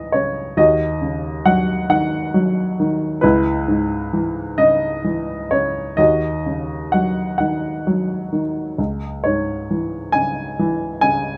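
A clear, woody upright piano plays alone from the start, close and up front with short sustain and light reverb, in a calm, tender classical piece in C# minor at 44 BPM in a rubato 6/8, tuned to A4 = 439 Hz and spanning C#2 to G#5, as its harmony moves between C#m7 and D#m7 before settling on C#m at 8.8 seconds in this fragment cut from a longer work.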